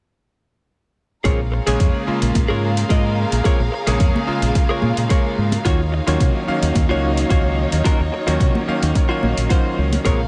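Lightly reverberant and punchy, this groovy, cosmic nu-disco excerpt in Bb minor moves at 109 BPM in a straight 4/4, with a tape-warm electronic kick drum up front and a gritty, overdriven hi-hat, both entering at 1.2 seconds alongside a bright, clangy electric grand piano pumping under sidechain and a clean, picked electric guitar riff colored by analog chorus and tape echo. A round, dark fingered bass and a smooth-topped, bowed studio string section with vibrato enter at 1.3 seconds, the strings holding sustained chords, both breathing with sidechain pumping over a shift from Bbm7 to Ebm9. Soft-handed congas join very quietly at 2.4 seconds.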